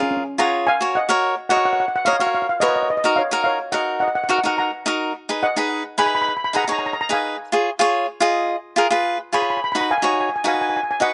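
Recorded outdoors with almost dry, roomless sound, this short clip of a longer calypso piece has a top end that stops at 10.6 kHz. The mood is carefree and sunny, set in a straight 4/4 feel. A lead steel pan carries the melody throughout, struck with soft rubber sticks for a mellow, dark, shimmering tone, with a slapback echo trailing each note. Beside it, an acoustic cavaquinho plays picked accompaniment that sounds bright and crisp, and both instruments sit up front in the mix for the full 11.1 seconds. The harmony moves from a C# opening through F#maj7, D#m7 and G#m7, then back to C# before settling on B.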